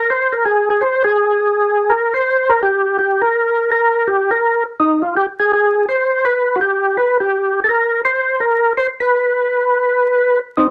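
A percussive tonewheel organ sits up front in a moderate studio room, its sound carrying a thin layer of vinyl crackle. This is a brief jazz excerpt in C minor, swinging at 166 BPM in 4/4, with a smoky, late-night mood. The organ plays solo for the full 10.7 seconds, ranging from C4 to C5. Its tone is full and lightly overdriven, with second harmonic percussion adding a crisp attack to each note. A slow rotary speaker and chorus vibrato give the sound a gently churning, breathing quality.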